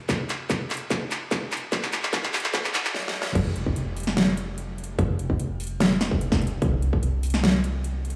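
A half-time 4/4 groove at 147 BPM drives this lush, emotional future bass fragment, tuned to A4 = 441 Hz. Drum fills from an up-front electronic kit with a huge snare, metallic hats, handclaps and crash build over a distorted, layered kick, then a brief stop with a final fill arrives at 2.9 seconds. At 3.4 seconds the drop lands with a deep, boomy 808-style sine bass carrying a noise layer and sidechain pumping, all set in a moderate shimmer reverb and a big, bare-room sound.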